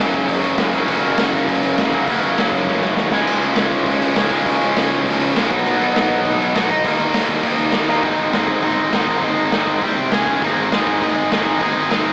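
A driving straight 4/4 at 201 BPM powers this rebellious, upbeat punk rock excerpt, where a double-tracked, overdriven electric guitar riff with slapback echo sits up front beside a punchy, gritty garage drum kit with crash, splash, hi-hat and a medium-tuned snare, fuzz-laden picked bass rumbles in the background, drum fills land at 2.7 and 7.9 seconds before the chords settle into Ab major at 8.0 seconds, and a lush hall reverb gives the whole an arena-meets-AM-radio sound.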